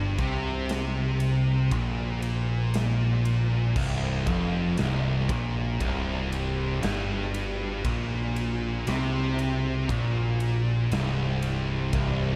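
Sludgy and brooding, this 12.4-second stretch of stoner and doom metal crawls along at 59 BPM in a straight 4/4, cut from a longer piece and built on a C5 power chord. Two thick fuzz guitars sit in the background with a warm, distorted tone, while a bright, scooped high-gain guitar, double-tracked and picked, adds its own edge to the low riff. A growling picked electric bass sits up front, overdriven and pushed through tube saturation for a punchy, amped bite beneath the guitars. A big acoustic rock drum kit enters at 0.2 seconds with a punchy kick, a medium-tuned snare and glittering crash and ride cymbals, ringing as if in a big room. The production is dark overall, with light reverb and a small room ambience wrapping the heavy, slow-moving wall of sound.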